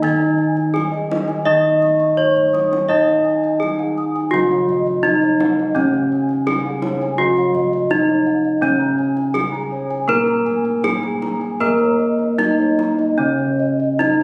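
Captured on a phone in the room and bathed in a moderate scoring-stage reverb, this short excerpt of Javanese gamelan in Eb slendro sounds serene and shimmering. It moves at 83 BPM in 4/4 with an uneven, elastic pulse. Up front, a bright bronze metallophone struck with horn mallets rings out the melody, while a second metallophone, also horn-mallet struck and sitting mid-forward, carries the accompaniment an octave lower. Above them, a mellow, softly padded metallophone plays arpeggios whose paired tuning produces shimmering beats, and airy bossed gongs add their own arpeggios from the background. Underneath, round, warm bossed gongs with a boxy small-room colour hold the bass, and a deep, distant kendang played with soft hands supplies percussion throughout, including a brief drum fill from 2.2 to 2.9 seconds.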